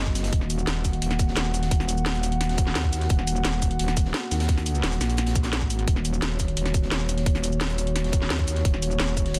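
A metallic, aggressive wobble bass sits up front in this dark, futuristic slice of technical drum and bass, its FM tone saturated through tube warmth, thickened with chorus and sidechain pumping from Eb1 to Eb2. The track moves at 173 BPM in straight 4/4, holding on an Eb minor chord throughout this short cut from a longer piece. Beneath it, a deep, moody analog pad of detuned square and sawtooth waves with a sub octave holds slow-attack chords with a long release, shaded by a moving notch, chorus and the same sidechain pumping. A tight electronic kick drum punches up front from 0.1 s, joined at 0.2 s by a layered electronic kit with a cracking snare, metallic hats and cabasa. Tucked very quietly underneath, a crunchy, gritty acoustic breakbeat kit adds a high-tuned snare and hi-hat with a rolled-off top, all within light reverb and a dense, heavily limited modern master.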